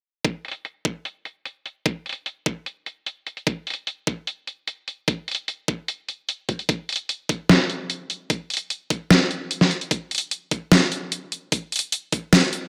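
An overdriven, knocking electronic kick and a layered dubstep kit of deep snare and bright hi-hats open this menacing, heavy wobble dubstep clip in a half-time 4/4 feel. Both drum parts sit up front with gritty overdrive, the hats and snare shaped by low-pass filtering and the kick by high-pass filtering, while a filter sweep runs across the drums from 0.2 to 12.7 seconds. Light reverb surrounds this produced, electronic fragment, cut from a longer piece.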